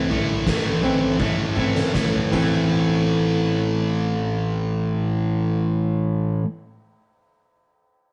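Angsty and cathartic, this short fragment of quiet-loud alternative rock in A minor moves at 76-84 BPM in a straight 4/4, resting on an A minor chord and slowing down over its first 2.7 seconds. A sludgy, overdriven electric guitar sits up front with a double-tracked, picked riff, while a fingerpicked steel-string acoustic guitar with old strings adds woody arpeggios beneath it. A fingered electric bass, growly and very quiet in the mix, holds a low A. An oversized, low-tuned acoustic drum kit with a punchy kick, fat snare, toms and dark ride cymbal sounds gritty and saturated in a bright stone room, rolling into a fill at 1.2 seconds and dropping out at 2.5 seconds. The rough rehearsal-room recording carries light reverb and a dull top end, giving the whole piece a murky, raw character.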